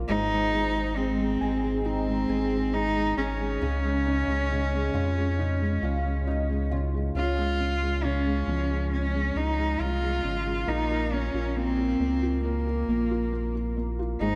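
Hopeful and emotional, this pop ballad excerpt centers on a single bowed cello playing the melody up front, intimate and sul tasto with light vibrato and a soft attack. A felt-muted upright piano with audible action noise and analog chorus carries the accompaniment and adds a fill from 5.4 to 7.2 seconds, while a round, deep sub bass sits up front beneath. A woody, fingerpicked nylon-string guitar with old strings plays arpeggios in the background until 7.7 seconds and returns briefly at the very end, all bathed in a dreamy cathedral reverb.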